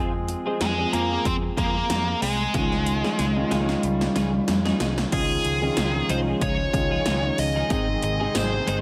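Uplifting and nostalgic, this short cut from a longer 1980s-style pop piece moves with a light sixteenth-note swing. A concert grand piano with deep bass and long sustain lays down the accompaniment, while a round, amped fingered bass holds the low end and a bright, twangy twelve-string electric guitar picks a compressed riff in the background through ensemble chorus and digital delay. The electronic pad drums come in at 0.3 seconds with a punchy kick, gated snare, metallic hats, crash and tambourine, all overdriven and soaked in gated reverb, and they play a fill before the second section. Up front from 0.6 seconds, a nasal, overdriven lead guitar with a parked wah carries the melody. At 5.1 seconds a very quiet, smooth, detuned sawtooth pad with a soft attack adds sustained chords beneath it all, and light reverb gives the mix a gentle sense of space.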